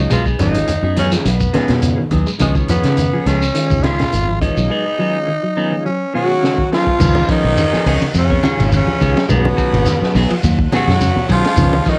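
A crunchy breakbeat drum kit, saturated and gritty with a punchy kick, high-tuned snare and a tape-worn, rolled-off top, drives this hypnotic afrobeat excerpt at 105 BPM in a straight 4/4, joined by low-tuned, ringing congas, a grainy, distant shekere and a round, dark fingered bass. A growling, raspy tenor saxophone carries the melody in Db mixolydian over Db7 and Cb6 chords, framed by phaser-tinged stabs from a clean electric guitar, warm arpeggios from a semi-hollow guitar with subtle chorus, and a smooth tonewheel organ through a slow rotary speaker in the background. At 6.1 seconds an edgy baritone sax adds a second line, joined at 6.2 seconds by a whispered, breathy alto sax, and a drum fill leads into a new section at 7.0 seconds, all in the light reverb of a home cassette recording.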